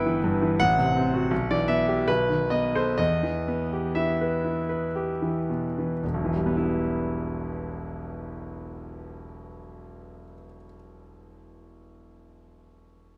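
Bittersweet and passionate, this romantic classical character piece for solo piano, cut from a longer work, unfolds in a rubato 3/4 that slows through its opening 6.0 seconds before a contrasting section begins, the concert grand sounding clear, smooth and faintly vintage with a deep bass, heard up front through close, detailed microphones in a moderate scoring-stage reverb.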